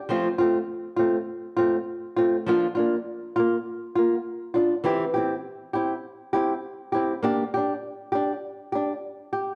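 Highlife in F major at 100 BPM, this carefree, warm excerpt features a lone nylon-string guitar, fingerpicked and up front, its small, dark tone marked by audible finger squeak. The guitar moves from F through Bb and C before landing on a G5 chord at 7.3 seconds, sitting in a moderate echo-chamber reverb with a studio ambience.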